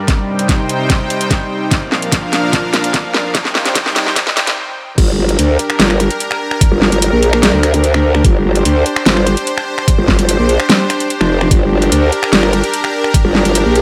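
A lush, detuned supersaw pad opens this aggressive, chaotic heavy wobble dubstep excerpt in G minor at 147 BPM with a half-time feel, pumping against a knocking electronic kick and an up-front kit of huge snare, metallic hats, finger snaps and crash as a drum fill and filter sweep build over Cm and Bb chords. After a brief stop at 4.6 seconds, the drop lands at 5.0 seconds on Gm, where a saturated, growling wobble bass with overdrive, chorus and a formant filter takes over the low end. The whole mix sits in light reverb.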